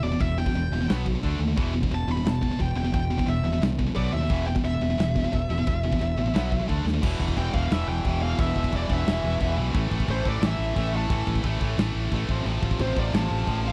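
Aggressive and dark, this heavy metal excerpt charges along at 176 BPM in a straight 4/4, with two bright, distorted picked rhythm guitars, one heavy and high-gain and one tight, driving riffs over an up-front, growly overdriven fingered bass, while a high-gain lead guitar with slapback echo carries the melody in a higher register. A big acoustic rock kit with a punchy kick, medium-tuned snare, crash and china cymbals and a smooth, rolled-off top fills at 6.9 seconds, leading into a new passage at 7.0 seconds where the harmony moves from E minor and power chords toward A and F over A. The dry, close sound has a 1970s studio character and small room ambience.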